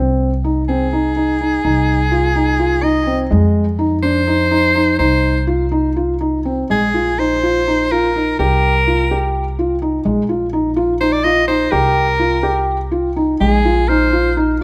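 A felt-muted upright piano opens this excerpt of contemporary chamber music, playing soft, intimate arpeggios with audible action noise, over a woody, dark pizzicato upright bass. The piece moves in a straight 7/8 at 250 BPM counted in eighths, in C minor, with a hypnotic yet restless mood. At 0.7 seconds an edgy soprano saxophone takes the solo melody in a punchy, forceful jazz style with vibrato, sitting up front with the piano and bass. From 6.7 seconds a second section shifts the harmony toward suspended and open dominant chords on Bb and C. At 13.9 seconds a glockenspiel struck with soft plastic mallets adds a bell-like, ringing note in the background, and a moderate recital hall reverb surrounds the ensemble.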